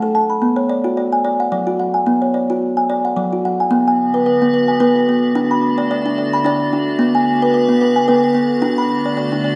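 World meditative music in a gentle, hypnotic 3/4 with a light swing, built around a kalimba playing arpeggios from the start, its woody, hollow-box tone sitting up front with a soft fingertip pluck and a ringing, vintage, band-limited character. At 4.1 seconds an icy glass pad enters with sustained chords under the kalimba, crystalline and airy with a slow attack, long release, chorus and its own reverb. The whole excerpt sits in a wet echo-chamber reverb with small-room ambience, moving between B minor and D major before it cuts off at 9.6 seconds.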